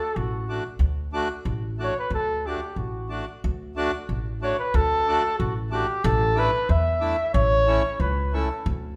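Alpine folk in a jolly, festive dance-band vein, this brief rubato excerpt in 2/4 features a warm flugelhorn carrying the vibrato-laden, classical-style melody up front, a woody, thumpy pizzicato upright bass underneath, and a reedy, hollow, close-miked accordion filling in the accompaniment, all heard in a moderate recital-hall reverb as the harmony moves from D to a suspended A chord and settles on A.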